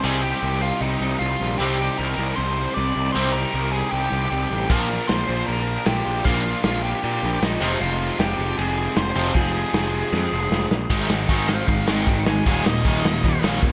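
Rebellious, energetic punk rock cut from a longer piece, opening in half time with a biting overdriven lead guitar carrying the melody over a distorted, double-tracked guitar riff with slapback echo, a hollow-bodied semi-hollow guitar and a tight distorted guitar set in the background, and a growly fuzz bass up front, before a loose acoustic drum kit with a tight kick and crashing cymbals enters at 4.7 seconds, fills into the lead solo at 10.9 seconds, and the whole mix blooms in a lush hall reverb for a big arena sound.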